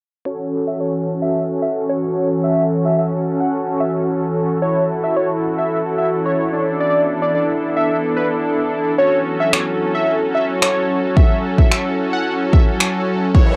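Euphoric and summery, this short dance-pop cut from a longer piece rides a straight 4/4 pulse. A catchy, plucky unison lead carries the melody from the start, its detuned sawtooth tone bright and punchy with a touch of vibrato, colored by cassette tape grit and an analog delay. Beneath it, a fat, detuned polysynth stacks bold sustained chords, while a glassy FM pad adds an ethereal, mellow bed with a slow attack, long release and ensemble chorus. A filter sweep runs across the whole passage, and the three synth parts all breathe with sidechain pumping over chords moving from A6 to E7sus4 and back. At 9.5 seconds a deep house drum kit arrives up front with a punchy kick and finger snaps, and a brief noise sweep at 13.4 seconds closes the clip, all set in a moderate booth ambience with the character of a home cassette recording.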